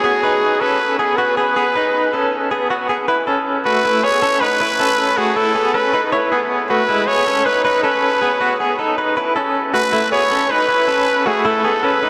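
A growling trumpet and a clean electric guitar begin together, opening a short cut from a longer indie pop piece at a brisk 158 BPM in straight 4/4. The trumpet carries the solo melody up front, its raspy, gritty tone marked by vibrato and scooped notes, with a diffuse ambient delay trailing behind it. Alongside it, the direct-recorded guitar picks bright, twangy, compressed arpeggios, colored by tremolo and its own diffuse delay. The harmony moves from G#m to Aadd9 at 3.1 seconds, then through C#m and B before returning to Aadd9, giving the restless mood a bittersweet lift. A huge, dreamy reverb soaks the whole space, and both parts play through to the end at 12.1 seconds.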